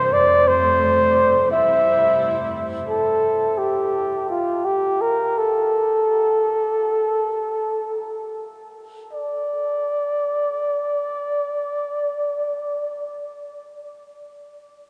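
A cathedral's long, echoing reverb surrounds this heartbroken, intimate acoustic folk-pop ballad fragment, played in free time and tuned to A4 = 437 Hz. Up front, a breathy, mellow flugelhorn carries the jazz-tinged solo melody with light vibrato and a whispered, soft attack from 0.0 to 13.2 seconds. A close chamber string section holds bowed sul tasto chords on F and C until 2.9 seconds, after which the horn continues alone and the pace slows until 9.1 seconds.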